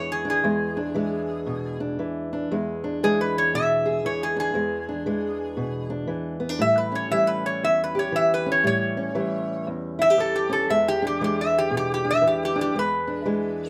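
A metal-body resonator slide guitar, played with a steel bar and fingerpicks, carries a nasal, metallic melody through plate reverb over a dark, boxy, woody fingerpicked old ladder-braced acoustic guitar in this gritty, soulful acoustic country blues excerpt, swinging at 117 BPM in E mixolydian as the chords move from E7 to A7 at 6.6 seconds and back to E7 at 10.7 seconds.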